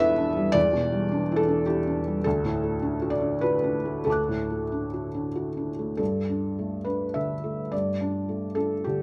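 Lightly reverberant and intimate, this short cut from a longer neoclassical minimalist piano piece in G major, tuned to A4 = 436 Hz, features a solo felt-muted upright piano, soft, mellow and up front, playing across a broad range from E1 to F#6 in a rubato 3/4 at roughly 90-110 BPM, moving from Em7 to D before opening onto a hopeful Gsus2 at 6.0 seconds.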